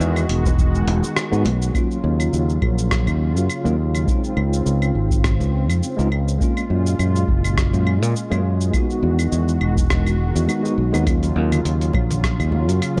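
Sunset chillout at 103 BPM in Eb dorian, with a wistful, gently swung 16th feel and a dark, softly reverberant production, cut from a longer piece and drifting through chords such as Emaj9, Ebm9, Dbmaj7 and Gbmaj9. A growly, bright fingered electric bass with tube saturation sits up front over a deep analog electronic kick and a gritty, overdriven sampler-style kit of claves, hi-hat, rim click and shaker, while a worn, slightly out-of-tune tine electric piano with digital delay murmurs in the background alongside a thick, detuned unison pad colored by chorus and tremolo. A very quiet, boxy baby grand piano offers a brief melodic touch only in the opening 1.1 seconds, and hard-handed, ringing congas appear at the start and return from 11.5 seconds.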